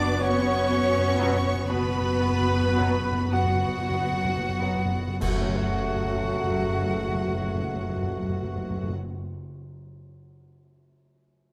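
This excerpt has a close, detailed sound set in a moderate scoring-stage reverb, framing a tragic, brooding romantic movement for piano and orchestra in a slow, rubato 12/8 that is cut from a longer piece. A bright, brilliant concert grand piano with deep bass carries the melody throughout, sitting in the background, while a smooth, lightly vibrato studio violin section also carries the melody up high until about 8.9 seconds. An airy silver flute, a mellow cor anglais, a distant, roomy clarinet and a lush symphonic violin section weave second lines, as a bassoon and a very quiet viola section fill the accompaniment and cello and double bass sections anchor the bass. Soft-mallet timpani play a fill through the opening phrase as the music slows, and from 1.2 seconds a punchy trombone section and a dark, very quiet French horn section hold sustained chords. At 5.2 seconds the harmony settles onto F# minor and the whole band accents the moment, with bright clash cymbals and concert bass drum sounding until 7.5 seconds. 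The rest of the ensemble drops away around 9 seconds, and the piano carries on alone to the close.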